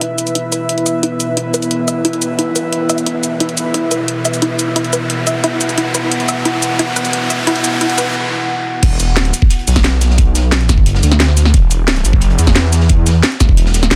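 Futuristic and tense, this dark technical drum and bass cut builds for 8.8 seconds on a deep, moody ambient pad with a moving notch, an airy breathy pad, a punchy unison pluck arpeggio with flanger and dub echo, and an electronic riser over an up-front kit of cracking snare, bright hats, cabasa and crash, then drops into a thick detuned saw bass, a knocking electronic kick and a gritty, saturated breakbeat kit in the background.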